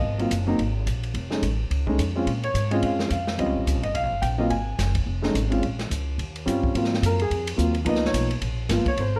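Swinging eighth notes drive this sophisticated jazz piano trio excerpt, where a dark, mellow baby grand carries the melody up front over a woody, thumpy pizzicato upright bass and a smooth small-room drum kit with a boomy kick, a medium-tuned snare and shadowy cymbals, set in light reverb, before the piano takes a solo at 6.7 seconds.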